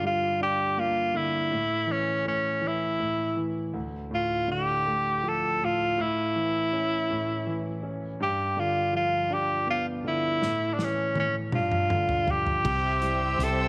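A bright, forceful tenor saxophone sings a melancholic, dramatic melody with vintage vibrato over a clear concert grand piano in this six-eight pop ballad, before a natural country drum kit with a punchy kick enters with a fill at 10.4 seconds, a growly fretless bass arrives at 12.6 seconds, and a lush, distant string section and a clean, compressed electric guitar playing arpeggios join at 12.7 seconds, all bathed in a moderate echo chamber reverb.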